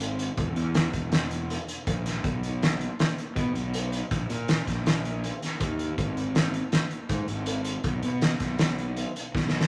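A growly, overdriven fuzz bass sits up front in this bright, playful math rock and midwest emo excerpt, played with the fingers and ranging from E1 to B2 for the full 9.7 seconds. Beside it, a loose indie drum kit of hi-hat, kick drum and snare drum runs throughout, its fat snare and punchy kick placed close while a pumping room sound surrounds the acoustic kit. The groove moves in a straight 5/4 at 161 BPM, with the tuning set to A4 = 441 Hz. A moderate, large studio reverb with a 1.2-second decay adds depth. A drum fill arrives at 9.3 seconds to close the passage, which is cut from a longer piece.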